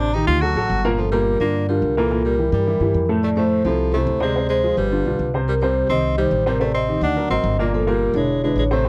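A dry, close studio sound in a 1970s style frames this driving, sophisticated jazz excerpt in G minor at 214 BPM, with a warm baby grand piano comping up front and a woody, thumpy pizzicato upright bass on gut strings anchoring the low end. A smooth tenor saxophone with vibrato and scooped notes carries a second line from the start, and at 1.0 s the mellow, ringing vibraphone, played with soft mallets and its motor off, takes the melody. The changes move from Gm7 through C7 and Fmaj7, then Dm7b5 and G7 to Cm, before Am7b5, Daug7 and Gm lead to a closing E7b13.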